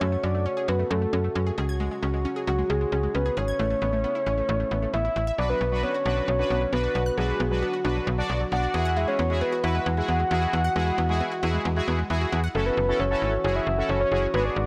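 Cool and driving, this pop excerpt moves at 134 BPM in a straight 4/4 feel in F# minor. A soft, octave-layered synth lead carries the melody with a full, round tone and a dark edge, dressed in chorus, vibrato and digital delay. Underneath, a snappy FM bass with a metallic, slap-like attack sits up front, while a mellow brass ensemble holds sustained chords in the background. A bright, detuned unison pluck spins arpeggios through digital delay until 12.5 s. At 5.4 s, as the harmony moves from Aadd9 to Bm, a bold, nasal analog synth brass joins with chorused accompaniment. Light reverb and a digital ambience frame the mix before it settles on F#m7 at 12.5 s.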